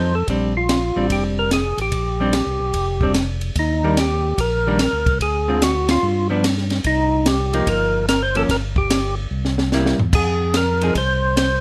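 A swinging 146 BPM groove in 4/4 drives this greasy soul jazz organ trio excerpt in Bb major, moving to Eb major at 3.6 s. Throughout, a fat, lightly overdriven percussive tonewheel organ carries the melody through a slow rotary speaker, a clean hollow-body electric jazz guitar comps underneath, and a second tonewheel organ holds down the bass. A dark compact cocktail drum kit with a tight kick and a high-tuned snare joins just after the start, the band hits an accent together at 5.8 s, and the drums play a fill from 9.3 s, all recorded close and dry with some lossy compression artefacts.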